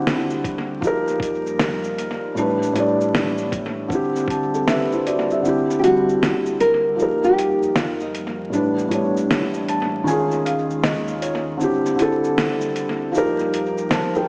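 Nostalgic and mellow, this lo-fi hip hop excerpt moves at 78 BPM with a swung 4/4 feel, built on a dark, felt-muted upright piano with audible action noise and cassette-tape coloring, a hollow, flute-like pad with chorus in the background, and a gritty, overdriven sampler-style drum kit with a thumpy kick, fat snare, hi-hat, shaker and analog delay. The piano adds fills along the way, the kick drops out from 5.4 seconds, and a full-bodied, fingerpicked nylon-string guitar carries the melody between 5.8 and 9.3 seconds. Suspended ninth chords float through an echo-heavy mix with echo chamber reverb, vinyl crackle and a small-speaker sound.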